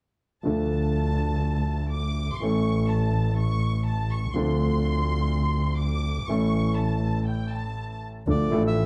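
A rubato tango in 4/4 at 122 BPM, this melancholic, sultry passage in D harmonic minor is cut from a longer piece. A clear concert grand piano enters at 0.4 seconds with up-front accompaniment and deep bass, joined by a close, bowed double bass whose single player adds rich vibrato and expressive portamento in the low register. Above them, a distant studio violin section carries a lush, soft-attacked second line high in the range, bowed with vibrato and gliding portamento. The harmony moves between D minor and A, touching Dm7 along the way, before a brief break leads to a return to D minor at 8.3 seconds. There a reedy, boxy bandoneon takes up the melody for the final moments. Light reverb and a dark production frame the whole.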